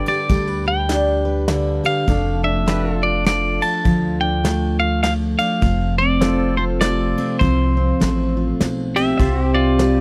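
A bright, twangy clean electric guitar carries the melody up front in this sunny, heartfelt honky-tonk and classic country excerpt, set in a swung 3/4 at 101 BPM over chords moving from G through Dm/F and F to C. A full-bodied steel-string acoustic guitar with fresh strings gives picked accompaniment, while a pedal steel guitar played with fingerpicks and slide holds sustained chords in the background with volume swells. A soft brush kit with a tight kick, ride cymbal and medium-tuned snare enters at 0.1 s, and a woody, thumpy pizzicato upright bass with gut strings joins at 0.3 s, all captured in a dry, close 1970s-style studio sound.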